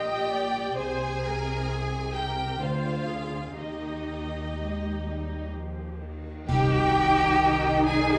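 Moving in a slow, rubato 3/4 at 60-68 BPM in C minor, this sorrowful, moving cinematic film-score excerpt sets a rich, vibrato-laden violin melody and focused second violin line over expressive viola portamento, ringing thumb-plucked harp arpeggios, smooth-topped cellos and lush, even double basses, with dark cymbals and bass drum entering in the background at 3.6 s before an airy silver flute, mellow French horn chords and articulate hard-mallet timpani join for an accent at 6.5 s as the harmony settles on Cmadd9 in a moderate concert hall reverb.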